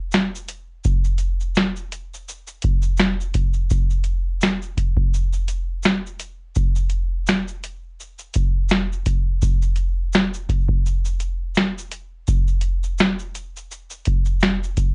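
A booming analog drum machine with a deep kick, tonal snare, metallic hats, finger snaps and shaker sits dry and up front, carrying a hazy, melancholic hip hop groove at 84 BPM with a light 16th-note swing, roughened by vintage 12-bit sampler grit and heard through worn, warbling cassette tape with pitch drift and a dulled top end, as the excerpt moves into a new section at 3.7 seconds.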